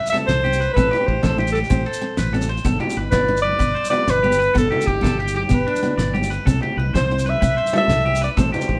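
A breathy, intimate alto saxophone carries the melody up front in this sunny, danceable highlife excerpt, moving in a straight 12/8 at 126 BPM over chords of C, Am and G. Beneath it, a twangy electric guitar at the edge of break-up plays arpeggios, a picked steel-string acoustic guitar plays accompaniment in the background, and a round fingered electric bass enters at 0.3 seconds. A damped 70s drum kit with a fat snare and tight kick, distant ringing congas and a grainy shekere keep the groove, all sounding like a band playing live together in one room with moderate studio reverb.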